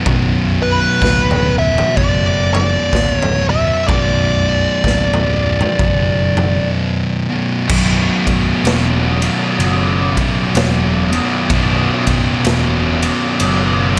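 The recording sounds dry and close, with little reverb around a raw garage drum kit whose small, pumping room, dark cymbals, punchy kick and gritty saturation sit under a rolled-off top. This is heavy, hypnotic stoner and doom metal at a slow 63 BPM in 4/4 with a swung eighth-note feel, cut from a longer piece and centred on B minor. Two thick fuzz guitars play the riff together, one held in the background and the other up front, while a picked electric bass adds an amped, growly, overdriven low end. From 0.6 seconds a fuzz lead guitar carries the melody up front through wah, distortion and delay, stopping at 6.7 seconds as a short break arrives. At 7.7 seconds a bright, scooped, high-gain guitar, double-tracked and set back in the mix, joins the riff for the second section.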